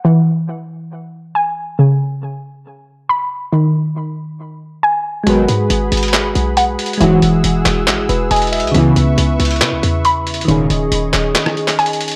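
Over a half-time trap pulse at 138 BPM, this dark, hard-hitting hip hop clip opens with a warbly, dusty pluck playing arpeggios alone, its nasal, detuned tone carried by chorus and delay. At 5.2 seconds soft, round electric-piano-like keys enter, and at 5.3 seconds the rest arrives: a smooth vintage pad holding sustained chords, bold wave-folded synth brass stabs, a punchy, tight 808-style bass, and a muffled, overdriven lo-fi sampler drum kit with handclaps, hi-hat and rim clicks sitting up front. Moving through minor seventh and suspended chords, the dusky production is bathed in light digital reverb, with the kick muted from 11.4 seconds to the end.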